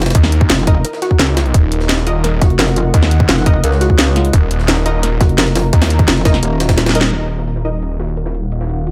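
Dark technical drum and bass at 172 BPM in Eb minor, this mechanical fragment from a longer piece drives on an overdriven kick and a tight electronic kit with a cracking snare and bright hats up front, while a gritty, pitched-up jungle sampler kit sits far back in a large room. A snarling, distorted sawtooth bass and a metallic FM wobble bass share the low end, under a deep, evolving pad, a warbling lo-fi pluck arpeggio with 12-bit grit and delay, and bold, punchy orchestra-hit-like stabs entering at 0.7 seconds. After a drum fill and band accent, the wobble bass and main kit drop out at 7.1 seconds as a filter sweep moves across the stabs.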